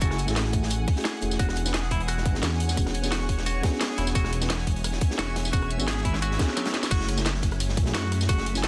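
Liquid drum and bass with a soulful, melancholic mood, this short cut moves between F#m9 and E13 chords, as a mellow FM electric piano with a soft, round tone plays accompaniment through chorus and digital delay, a shimmering ambient pad holds ethereal, sidechain-pumped chords in the background, and a clean electric guitar picks twangy arpeggios through spring reverb and tape echo. Up front, a detuned saw bass with a menacing filter swell and tube saturation sits beside a tight electronic kick, while a drum and bass kit brings a cracking snare, metallic hats, ride, crash, rim click and tambourine over a gritty, dark breakbeat kit tucked behind it. A drum fill runs from 6.4 to 6.9 seconds, and the kick stops at 8.4 seconds, all in a dense, heavily limited mix with light reverb.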